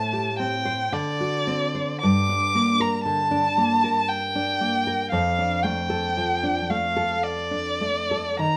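A bowed violin and a fingerpicked nylon-string guitar begin together at 0.0 s in this romantic duo, a yearning, melancholic fragment cut from a longer piece. The tempo is slow, around 50-59 BPM in 3/4, and the rubato feel lets the phrases stretch and breathe. The violin carries the melody between D5 and D6 with a dark, smooth tone, soft attacks, expressive vibrato and gliding portamento, sitting up front. Beneath it, the full-bodied classical guitar supplies deep accompaniment from F2 up to C5, moving through Am7, D7 and Gm before settling on Dm/F. The two players sound as though they are performing live in one large studio, with a moderate reverb of about 1.0 s giving the 8.6-second passage a sense of space.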